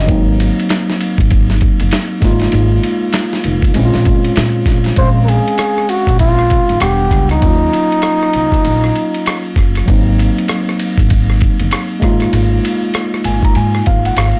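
Smoky and mellow, this jazz-hop cut from a longer hip hop piece swings on a clean tine electric piano heard through its built-in speakers, a woody, dark pizzicato upright bass with tube saturation, and a muffled, pitched-down sampler-style drum kit with a thumpy kick and soft clipping on the snare. From 5.0 to 9.5 seconds a breathy flugelhorn steps up front for a jazz solo, its scooped notes and vibrato carried by a slapback echo, and the electric piano closes with a fill from 12.9 seconds. The recording is blown-out and overdriven under vinyl crackle and light reverb.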